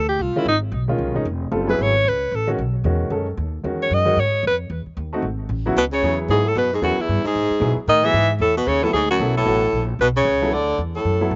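A relaxed, warm mood settles over this short cut from a longer small-group swing and bop tune, moving at a brisk 4/4 with a loose swing on the eighth notes. A bright alto saxophone carries the melody up front from the start, playing solo through the opening section with light vibrato and scooped notes in an idiomatic jazz style. Beneath it, a woody, plucked upright bass with steel strings sits close and full, while a smooth, vintage-toned grand piano comps behind both, its chords trailed by a slapback echo. At 5.8 seconds a clear baritone saxophone joins with a present second line, sharing the same light vibrato and scooped phrasing in the low register as the harmony moves through plain major and open fifth chords. The sound is dry and close, captured in the open air with little reverb and a softened top end.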